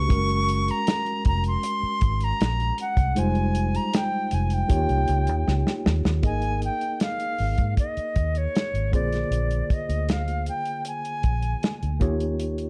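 A reedy silver concert flute carries the melody up front with vibrato and a crisp attack, its line touched by slapback echo until it drops out at 12.0 s, in this lush, warm 1970s-style soul excerpt in Ab major at a relaxed 78 BPM. Beneath it, a worn, slightly out-of-tune tine electric piano with light overdrive supplies the chords, while a round, punchy foam-muted fingered bass and a dry, tight soul drum kit with a rolled-off top hold the groove. A drum fill at 5.5 s leads into the second section at 6.2 s, where the harmony opens onto an Absus2, all set in a dark production with light small-room reverb.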